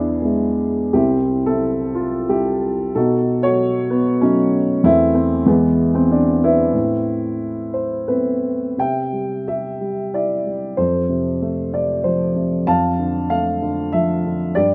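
A lone upright piano opens this short cut from a longer classical piece, its dark, woody tone sitting up front with long sustain as it moves through a bittersweet A minor passage in a rubato 3/4 that drifts between 83 and 97 BPM. At 8.8 seconds the harmony turns toward C major, passing through F and Dm/F, giving the cool, lyrical mood a gentler light. Light reverb and a dark, warm production keep the sound intimate.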